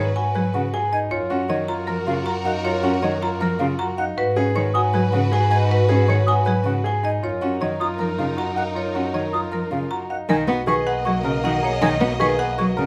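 A light reverb gives this short passage of minimalist classical pattern music a gentle sense of space, and its meditative, hypnotic mood settles in at a steady 157 BPM in a straight 4/4. A marimba struck with hard mallets carries the melody with a woody, percussive bite, while a brilliant concert grand piano and a pure, mellow flute spin arpeggios around it, the flute joining at 0.5 seconds. Beneath them, a close, expressive solo cello plays accompaniment with soft attacks and portamento, and a focused, up-front bowed double bass anchors the low end. A lush studio violin section holds sustained chords in the background, adding vibrato-laden depth. The harmony circles between G#m7 and F#6 before moving to a Bmaj9 at 10.3 seconds, where a new section begins.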